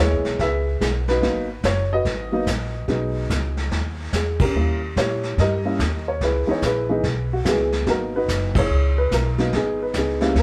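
A dark baby grand piano carries the melody from the first moment, with a woody, thumpy upright bass played pizzicato beneath it. Brushes on a vintage kit join at 0.2 seconds, bringing brushed snare, hi-hat, a punchy kick and crash cymbal with a rolled-off top. This short fragment of a longer jazz piano trio performance has a smoky, swinging mood and swung eighth notes. The piano sounds mellow and intimate, sitting up front with a short sustain and audible action noise, while the harmony moves through minor seventh chords and a tense D#7b9 before settling back to minor. The whole band hits accents together at 4.3 and 8.5 seconds. Captured live in one room with moderate studio reverb, the trio has a natural sound.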